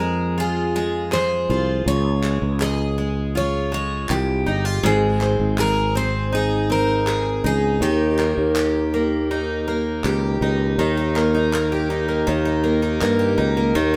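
A sunny, carefree acoustic pop piece moves at an easy 81 BPM in a straight 4/4, cut from a longer piece and played by a small band together in one lightly reverberant room. A picked steel-string acoustic guitar carries the melody in a bright, full-bodied jumbo voice until 10.0 seconds, while a picked twelve-string acoustic guitar sits up front with a shimmering, octave-doubled accompaniment, its fresh strings giving off audible finger squeak. Beneath them a sustaining fretless electric bass sounds growly and punchy, direct and close in the mix. Crisp group handclaps, caught with the live room around them, join at 1.1 seconds and continue to 13.2 seconds. The harmony moves through Fm, Db, Ab and Eb, and after the melody drops out the twelve-string and bass carry a new section from 10.8 seconds to the end, with the claps joining them through most of it.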